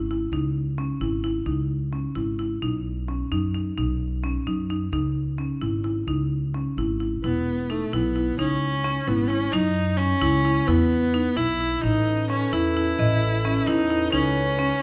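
Set in an uneven 5/8 metre with a straight feel at 262 eighth-note beats per minute, this restless, pensive piece of contemporary chamber music sits in C# minor and is heard as an excerpt from a longer work. A marimba struck with hard mallets carries the arpeggios from the start, its padauk bars sounding bright, percussive and dry, close-miked and up front. Beneath it, a pizzicato upright bass with steel strings holds the low end, growly and woody. At 7.2 seconds a single bowed viola enters with a second line, its clear, intense tone shaped by vibrato and placed near the listener. At 11.8 seconds a glass harmonica adds sustained chords, ethereal and airy with a slow, smooth attack, as the harmony, having moved from C#m through E5 and F#5, reaches Aadd9 before settling on C#7(no3). A moderate recital hall reverb surrounds the ensemble.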